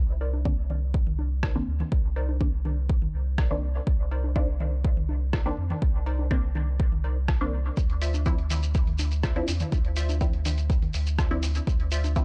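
Dub techno at 123 BPM in C minor, this deep, hazy excerpt moves in a straight 4/4 from a Cm9 chord to Dm9 at 7.8 seconds. A clean, smooth pure sine sub bass sits up front from the start with transformer saturation and sidechain pumping, joined almost at once by an overdriven electronic kick drum, deep and layered. Two chord parts carry the harmony: a muted, resonant filtered dub chord stab with a sawtooth and wave-folded edge, and a crisp, digital wavetable chord stab sitting higher and lower in the mix, both plucky and short with phaser and dub echo. Electronic congas and toms with a tape-warm analog tone pump under the sidechain and trail off into echo, while a muffled, pitched-down lo-fi sampler-style kit adds hi-hat and rim click from 1.4 seconds. A grainy, close shekere enters at 7.8 seconds, and the whole recording is dry and gritty, with a cassette-tape hardware character and little reverb.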